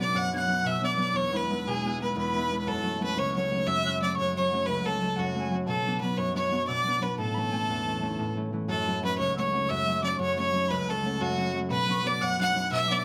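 Cheerful and bright, this short excerpt of a Celtic slip jig moves at 120 BPM in a straight 9/8, cut from a longer piece and tuned slightly below standard pitch at A4 = 437 Hz. A clear, focused fiddle carries the melody up front, a single bowed player with light vibrato ranging from F#4 to F#5. Above it, a reedy wooden whistle sits distant in the background with a second line, its airy, tongued tone marked by chiff and vibrato. A ringing concert harp, fingerpicked and also up front, supplies the accompaniment from low C#2 up to E4. The tune passes through Bm, E, F#m and A, its opening strain returning at 8.7 seconds, and a moderate studio reverb gives the trio a modest sense of space.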